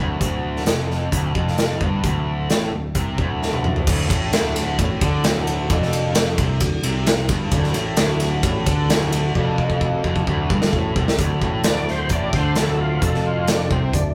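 The up-front big rock drum kit, with its boomy kick and bright cymbals, drives this sunny classic rock excerpt at 131 BPM, pushing a scooped, distorted electric guitar riff paired with a very quiet overdriven semi-hollow guitar over a growly fretless bass, all moving between D5 and D chords. At 3.9 seconds a dark grand piano with audible action noise and a lush, mellow string machine join in the background, and drum fills lead into a gritty, overdriven tonewheel organ solo at 11.2 seconds, colored by slow rotary speaker, chorus vibrato and slapback echo. The rough rehearsal-room sound carries saturation and moderate reverb.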